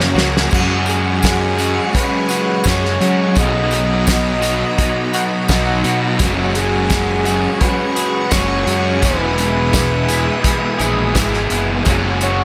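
A fuzzy, overdriven fingered bass sits up front in this wistful, blissful shoegaze and dream pop excerpt at 85 BPM, driven by a loose, acoustic indie kit with a fat snare, tight kick and dark cymbals that opens with a drum fill before a tambourine jingles in at 0.2 seconds. Two picked overdriven guitar riffs churn beneath, one crunchy with ensemble chorus and one compressed in the background with reverse reverb, while a very quiet, clean direct guitar arpeggiates and a shimmering, vintage string machine of violins holds bright sustained chords behind them. At 0.9 seconds a reedy, woody FM lead with chorus and slapback echo floats a soft-edged melody over F#sus2, Bmaj7 and Emaj7 chords, all set in light studio reverb.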